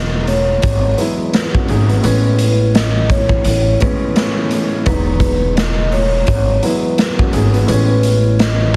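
A mellow, ringing vibraphone with a delay-touched melody floats over a dark, vintage concert grand piano with a cassette-tape character and a woody pizzicato upright bass in this soulful, confident boom-bap hip-hop excerpt at 85 BPM with a 16th-note swing, while a punchy, gritty garage drum kit of kick, snare and hi-hat sits up front from 0.3 s, all under light reverb and a heavily compressed radio sound as the harmony moves between Emaj9 and Amaj9 in E major.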